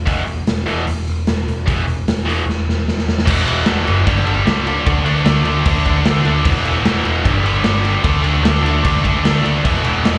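Aggressive and driving, this hard rock excerpt pairs a growly overdriven picked electric bass with a tight, double-tracked distorted guitar riff carrying slapback echo and a gritty, saturated garage drum kit with a punchy kick, all heard live through a club PA in a small room, with a drum fill at 2.5 seconds leading into a new section at 3.3 seconds.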